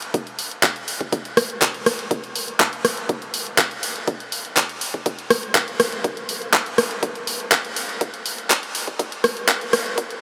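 Drenched in a huge, dreamy reverb with a six-second tail and thinned by a high-pass filter, this short house build-up, cut from a longer track, moves at 122 BPM in a straight 4/4 with an uplifting, hopeful mood. An up-front, layered deep house kit of handclaps, hi-hat and rim click runs throughout. A punchy electronic kick, itself high-pass filtered, enters at 0.1 seconds and sits beneath it.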